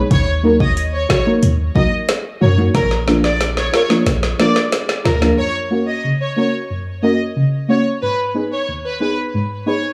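Dancehall at 91 BPM with a tough, bouncy feel, this cut from a longer piece moves through Ebm, Bb, Gb and Abm as deep, nasal chord stabs with chorus sit up front beside a boomy, sine-like 808-style bass and an overdriven afro-pop kit of deep kick, woody snare and metallic hats that plays a fill from 2.7 seconds before the bass drops out at 5.3 seconds and the drums at 5.4 seconds, leaving the stabs and a rich, distant violin section with vibrato and tape echo to carry on in an echo-heavy mix with studio ambience.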